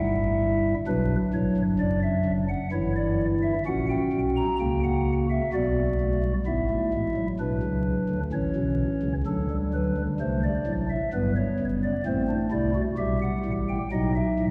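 In a straight 3/4 at 64 BPM, this lively yet stately passage from a longer baroque-style four-part fugue in E minor features a solo pipe organ on a soft, hollow stopped flute voice, up front yet bathed in a 2.9-second church reverb and heard from further back in the room through vinyl crackle, its harmony moving from Em/G into a second section at 6.5 seconds and closing on B7 at 13.9 seconds.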